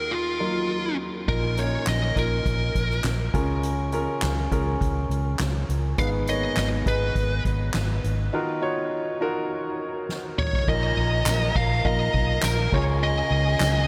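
A straight 4/4 pulse at 102 BPM carries this dramatic, earnest piano-driven pop excerpt, where a fuzzy lead guitar with delay sings the melody over a polished, up-front baby grand, a round, foam-muted electric bass and a soft-mallet drum kit with dark cymbals enter at 1.3 seconds, a drum fill closes a break before a lush, bowed violin section joins in the background at 10.7 seconds with a jingly, distant tambourine soon after, all bathed in a dreamy, reverb-soaked haze over chords moving from Ebmadd9 through Bbsus4, Db6 and Abm.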